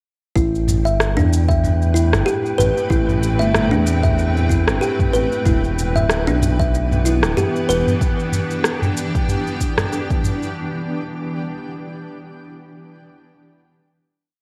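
A swung 94 BPM groove in 4/4, built from a soft, deep electronic kick and an organic layered kit of rim clicks, shaker and low toms, drives this mystical, meditative organic downtempo piece in E minor, where an up-front sawtooth-and-triangle synth bass plays a mellow syncopated riff, a woody kalimba repeats a 16-step thumb-plucked sequence through tape echo, a cloudy granular pad with its own reverb and sidechain pumping arrives at 1.8 s with slowly shifting Am7 and Em7 chords, and a dark, breathy wind-like tone holds a high note in the background, while the recording carries light digital ambience and the warbling pitch drift of worn cassette tape.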